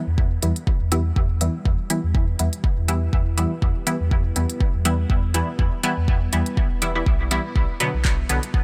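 A muted, detuned chord stab opens this hazy, cavernous dub techno fragment, its filtered plucks sitting up front with chorus, phaser, dub echo and sidechain pumping, as a round, soft sub bass and a deep electronic kick follow almost at once. A house drum kit adds handclaps and smooth hi-hats with a light swing, and from 1.6 seconds a dark, moody sawtooth pad with chorus and its own reverb hangs in the background. The harmony holds one minor chord before shifting to B minor near 7.6 seconds, all in a dry mix.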